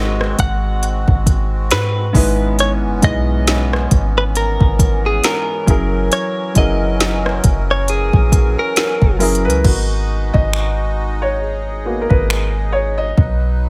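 Late-night and moody, this excerpt of contemporary R&B rides a swung 16th-note feel, with a clean, compressed electric guitar carrying the melody through digital delay while a soft, felt-muted upright piano and a reedy accordion with light tremolo tuning hold the harmony underneath. An up-front smooth drum kit of soft kick, woody snare, hi-hat, rim click, finger snaps and crash sits over a deep, boomy 808-style sine bass. A very quiet, bell-like celesta glints in at 6.6 s, and from 9.6 s the intimate piano takes a solo, all in a dry sound with little reverb.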